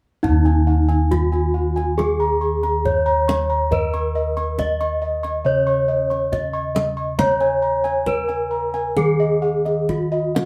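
Ceremonial and shimmering, this short cut from a longer Javanese gamelan piece moves at a steady 69 BPM in 4/4 with a straight feel, set in Eb slendro tuning. A bronze metallophone carries the melody up front, its dark, smooth tone struck with a wooden mallet and ringing with the shimmering beats of paired tuning, while a slapback echo trails each note. Above it, a set of bossed gongs plays arpeggios in a round, airy voice with a beating edge. A second set of bossed gongs holds the bass, reaching down to Eb2 with a bright, round sound. The kendang adds deep percussion struck with hard hands, heard close and dry, and the whole ensemble plays live together in one room with a reverberant studio ambience from 0.2 to 10.5 seconds.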